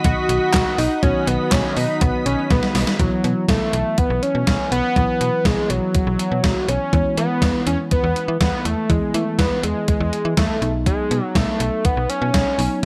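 The excerpt opens with a bold, detuned octave-doubled synth lead carrying the melody up front over a gated digital drum machine with a thumpy kick, overdriven gated snare, handclaps and hi-hat, while a snappy, metallic FM bass, a mellow tine electric piano in the background and a vintage organ-like string pad fill out this bright, nostalgic synth-pop in B mixolydian at 122 BPM. The string pad drops out at 3.0 seconds, just after a drum fill, and the remaining parts carry on through a chord progression moving from B to Bsus4, E and B7, all set in light digital ambience.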